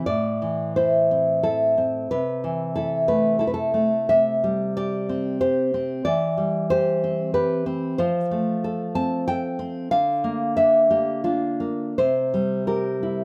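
Sunny and tender, this romantic piece for solo classical guitar moves in a flexible, rubato 3/4 at roughly 77 to 96 BPM. The nylon-string guitar is fingerpicked and has a dark, deep classical tone, spanning A2 to A5. It sits up front in a close, detailed sound with little reverb, so small finger squeaks come through clearly. The harmony begins in A minor, moving from Am through Am/C to C and C/E, then settles into F major at 8.0 s by way of F, Bb/D and C. The guitar plays alone from the start to 13.2 s, and the passage is cut from a longer piece.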